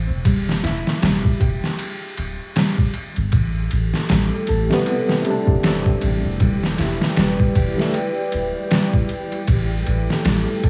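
A soft, round 808-style bass opens this smoky, melancholic trip hop fragment, joined almost at once by a fingerpicked nylon-string guitar whose classical arpeggios carry 12-bit sampler grit, a low-pass filter and tape echo. Up front sits a compressed, pitched-down sampler-style drum kit with a thumpy kick, a medium-tuned snare and ride cymbal, gritty and tape-warm from being re-recorded in a small room, moving with a lazy swung feel. At 3.6 seconds a very quiet, flickering granular texture creeps in, and a deep, moody ambient pad soon follows, its detuned, wave-folded tones spreading through chorus and reverb. A bright, barky tine electric piano adds clean accompaniment with tremolo and tape echo from 4.7 to 8.0 seconds, over a dark progression moving from Em through Am7 and Em7 to A7(no3). Vinyl crackle and light room reverb give the whole cut a dusty, late-night atmosphere.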